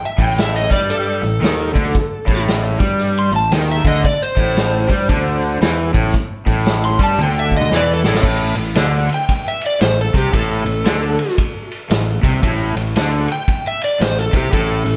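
Blues rock in the power-trio mould with a southern rock edge, this heavy, brooding excerpt moves at 114 BPM in 4/4 with a swung eighth-note feel, sitting on A minor throughout. An overdriven slide guitar carries the melody from the very start, its fingered tone warm and up front, while a double-tracked semi-hollow guitar enters at 0.2 seconds with a bright, picked riff in its low register, sounding hollow-bodied and pushed up front. Underneath, a fingered electric bass growls through fuzz and overdrive, punchy and bright. The vintage acoustic kit sounds roomy and a little distant, with dark cymbals, a medium-tuned snare, a tight kick and a rolled-off top end, and it plays a fill from 7.2 to 8.2 seconds. At 8.2 seconds the music shifts into a new section where the slide guitar takes a solo through to the end, all wrapped in light reverb.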